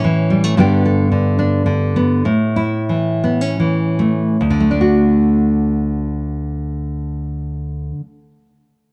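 In a straight 3/4 lilt that ranges between 68 and 114 BPM and slows from 0.6 to 4.4 seconds, this gentle, hopeful folk excerpt in D major, tuned to A4 = 439 Hz, features a solo fingerpicked nylon-string guitar, full-bodied and up front, moving from A through G and back to A before settling on D at 4.4 seconds and playing until 8.3 seconds, all set in light reverb with a dark production.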